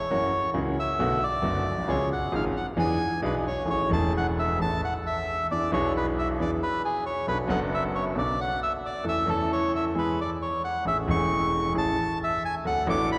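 A rubato 4/4 pulse, centred around 134 BPM, gives this short tango fragment a playful, elegant sway that stretches and relaxes. A reedy, dark bandoneon carries the melody up front, ranging from G#4 to D6 with a smooth, singing tone. A clear concert grand piano accompanies, also up front, its deep bass and slightly vintage character reaching down to E1 and filling in the harmony. The opening bars move through F#7, Bm7, C# and E7 before the music settles into A major at 3.7 s on an Amaj7, then wanders through E7, Bm7 and A/E and ends on D. A cathedral reverb with a long tail of 4.7 seconds places both instruments in a church or concert hall, lending the fragment a spacious, ringing air as it breaks off at 13.2 s.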